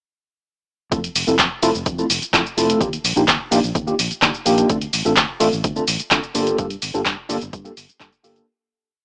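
A worn, slightly out-of-tune tine electric piano sits up front with phased, sidechain-pumped dotted-rhythm chords moving from Fmaj7 through Ebmaj9 and Dm7 to Gm9 in this sunny, funky filtered disco house piece, alongside a dark, round octave-jumping fingered electric bass, a punchy four-on-the-floor electronic kick and a programmed analog drum machine of handclaps, hi-hat and shaker, all heard in a dry, gritty small-speaker sound that fades out from 6.0 seconds to 8.5 seconds.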